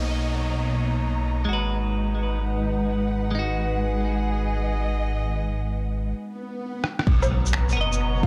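Future garage with a melancholic, ghostly air, where a twangy clean electric guitar with analog delay and veiled, muted strings pump over a rumbling detuned saw bass and background sound effects, until a muffled, pitched-down sampler-style kit with dub echo enters at 6.8 seconds, a deep electronic kick lands up front at 7.1 seconds, and a clear alto saxophone surfaces at 8.2 seconds, all in an echo-heavy mix.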